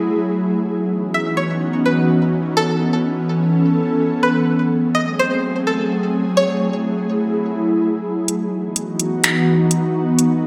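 Spacious and hazy, this atmospheric cloud-rap cut at 126 BPM in a half-time feel rests on an ethereal, airy pad of sustained chords thickened by ensemble chorus, while a twangy, string-like resonator pluck carries a bright melody from 1.1 to 6.8 seconds through chorus, phaser and delay, and a smooth electronic R&B kit of finger snaps and metallic hi-hats slips in at 8.3 seconds, with the whole dreamy mix soaked in lush hall reverb.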